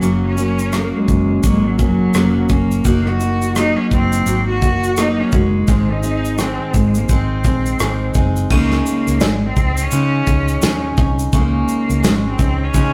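An 85 BPM groove in 4/4 with a gentle sixteenth-note swing sets this sunny, carefree acoustic pop excerpt in motion, carried by a soft brush kit with a punchy kick, medium-tuned snare, rim click, shaker and crash, while a vintage foam-muted fingered electric bass adds a dark, round low end. Over a full-bodied picked dreadnought acoustic guitar moving through Gb, Ebm/Gb and Ab, a single bowed cello sings a smooth, clear melody with vibrato, before the harmony opens onto Dbsus2 at 8.5 seconds. A moderate stone-room reverb and tube saturation give the whole a rough, rehearsal-room character.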